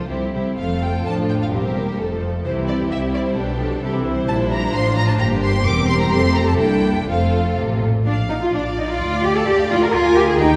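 Spirited and lively, this brief excerpt from a quick classical-period movement for string orchestra in 2/4 moves with a rubato feel, as a focused, vibrato-rich violin section carries the melody over a second violin line, smooth, distant violas in accompaniment, an even cello section in the background on the bass, and expressive double basses beneath, all heard from further back in a reverberant scoring stage before the harmony shifts to B-flat at 8.1 seconds.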